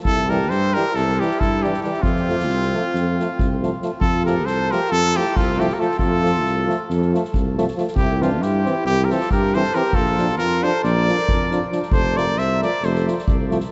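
A bright, close-miked trumpet carries the melody up front from the very start, with a mellow, distant flugelhorn playing a second line behind it. A roomy tuba bass and a soft-mallet drum kit with a boomy kick and medium-tuned snare arrive almost at once, driving this exuberant, festive Balkan brass band piece in 9/8 at 273 BPM in F major. From 0.3 s a clear, vintage-toned trombone and a soft-attack euphonium join as background accompaniment over chords moving from C to F and through Bb, and the ensemble rings in a vast, echoing cathedral space in this excerpt cut from a longer piece.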